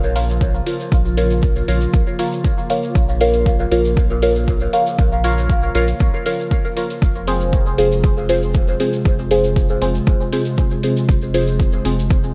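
Bright, 1980s-style digital production with light reverb frames this cavernous, hypnotic dub techno fragment at 118 BPM in straight 4/4, where an overdriven, up-front electronic kick, a small-room electronic hi-hat and a grainy acoustic tube shaker sit alongside a round, soft sub bass, while deep, nasal chord stabs with chorus, phaser, dub echo and a filter sweep hover over a warbling, detuned, lo-fi tape-like pad, the bass, stabs and pad pumping to the sidechain as the harmony moves from Bbm to Fm at 7.0 seconds.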